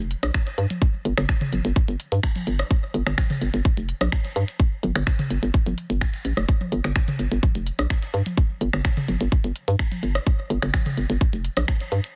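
A hollow, knocking FM bass with a fast attack and bouncy decay pumps under sidechain compression in the low register, sitting up front beside a tight, tape-warm electronic kick in this sparse, clinical minimal techno excerpt at 127 BPM in G minor. Above them, a clicky, overdriven drum kit of finger snaps and hi-hat and a booming analog drum machine with rim clicks, toms and digital delay fill out the straight 4/4 groove. The mix is dry and dense, with a heavily limited modern master.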